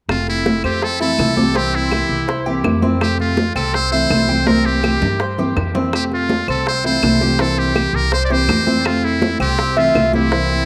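A moderate spring reverb gives this sunny, danceable Cuban son and guajira excerpt an airy sheen, with a buzzy, brilliant muted trumpet up front playing a forceful jazz-style solo melody with scooped notes, light vibrato and tape echo. Beneath it, a dark, full-bodied nylon-string guitar is thumb-plucked over a thumpy, gut-strung upright bass, while a metallic Cuban tres joins at 0.6 seconds with picked arpeggios on doubled strings. Ringing congas, tight hard-handed bongos and woody claves sit in the background, with a drum fill from 4.5 to 5.9 seconds, as the harmony alternates between Fmaj7 and C7.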